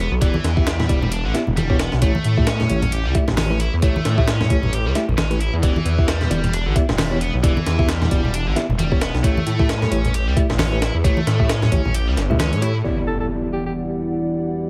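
Heavily compressed with a radio-like squash and light reverb, this raw, funky breakbeat excerpt rides a swung 133 BPM groove in E dorian. A gritty sampler-style drum kit with a thumpy kick and high-tuned snare sits up front beside a swirling, thick phased saw bass. Soft-handed acoustic congas, a high-gain double-tracked guitar riff with dub echo, and bell-like electric piano stabs through a low-pass filter fill out the Em7 to A7 vamp. At 12.8 s an electronic impact hits, followed by a brief vibrato alto saxophone phrase with an AM radio tone and dub echo at 13.1 s and a deep, moody analog pad with chorus and sidechain pumping at 13.2 s.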